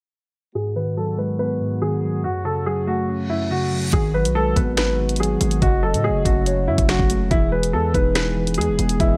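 A digital ambience surrounds this ominous, menacing drill excerpt at 142 BPM in a half-time feel, in G# phrygian, opening with a filter-swept intro where a dark, intimate grand piano melody with audible action noise and tape echo sits up front over a mellow tine electric piano and a background French horn section with light vibrato. A reverse cymbal at 3.3 seconds leads into the second section at 3.9 seconds, where a punchy, heavy 808-style bass and an electronic drill kit with knocking kick, sharp snare, bright hats and finger snaps arrive. At 4.1 seconds a hollow, woody clarinet-like synth lead with chorus and tape echo adds a soft second line in the background as the chords move from G#m7 through F#m to Emaj7.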